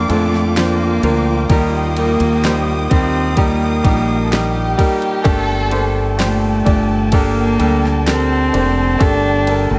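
A dark, reedy cello carries the melody from the opening, joined at once by a bright concert grand piano, a round, punchy fretless electric bass and a lush string section holding sustained chords, with a soft-kicked, fat-snared R&B drum kit using kick, snare and ride. This emotional, longing pop ballad in G minor moves at a slow 64 BPM in straight 4/4, its harmony passing from Bb to Eb and then to Gmadd9 at 5.3 seconds. A close violin section adds a brief second line with portamento between 4.2 and 6.0 seconds, in a studio ambience, in this short cut from a longer piece.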